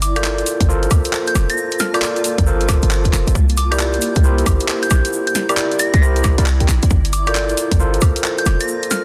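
Moody and bouncy, this short two-step UK garage excerpt swings over Gm9 and C9 chords as a soft, pure FM synth bell melody with chorus, phaser and digital delay floats above a punchy, up-front 808-style bass with tube saturation and sidechain pumping, a garage kit of cracking snare, bright hats, handclaps and woodblock in a small room, a tight electronic kick from 0.6 s, a grainy tube shaker and a cloudy, blurred granular pad in the background, and barky, gritty overdriven tine electric piano stabs through a low-pass filter and delay entering at 0.2 s, all in a dense, heavily limited modern master.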